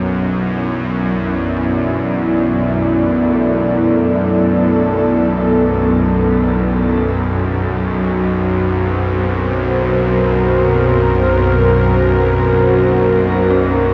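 A tense, nasal bowed-like drone sits up front in the low register, its bright sawtooth edge carrying vibrato and its own built-in reverb. Above it, a deep, moody analog pad holds sustained chords with chorus and shimmer reverb, moving from Bm7 to F# at 7.0 seconds. In the background, an eerie, inharmonic synth bell fades in with arpeggios through chorus, tremolo and delay, and the whole piece floats in free time with an ominous, unsettling dark ambient mood inside a cathedral-like reverb.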